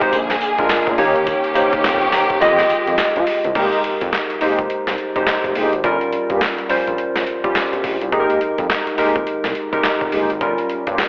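New jack swing R&B in F minor at 105 BPM, this excerpt moves with a confident, punchy swagger over a swung sixteenth-note feel. Up front, a gritty, compressed sampler-style drum kit, pitched down, pairs a thumpy kick and a high-tuned snare with handclaps, hi-hat, tambourine and crash cymbal, all washed in gated reverb, and the kick drops out between 2.4 and 3.6 seconds. Round, detuned analog keys carry the accompaniment throughout with a chorused sheen and filter sweeps, while a smooth gliding synth bass of sawtooth and square waves slides underneath with portamento. A lush bowed string section holds expressive sustained chords only until 3.5 seconds, and from 1.0 seconds dark, brassy synth stabs sit in the background, colored by ring modulation, vibrato, chorus and digital delay. The harmony moves from Bb7 and Eb7 through Fm9 into a passage alternating Fm11 and Gm7b5, and the whole mix sits in a hall-like digital ambience with a filtered telephone tone.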